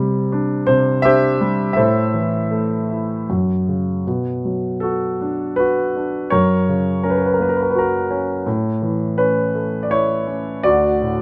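A warm, up-front concert grand piano with a deep bass carries this wistful, dark classical excerpt alone, moving in a rubato 3/4 at around 76-85 BPM through Csus2, Am and F#5 before settling into B minor at 4.1 s and passing through Bm, F#, A and D under moderate studio reverb.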